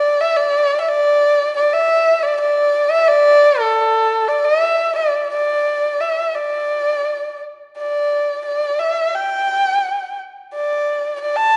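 Bathed in the wet reverb of a recital hall with a softened top end, this short festive and graceful Chinese traditional passage features a single dark, woody erhu bowed up front as the solo voice, shaping its line with vibrato and portamento in a free rubato feel around 87 BPM in 4/4 for its full 11.6 seconds.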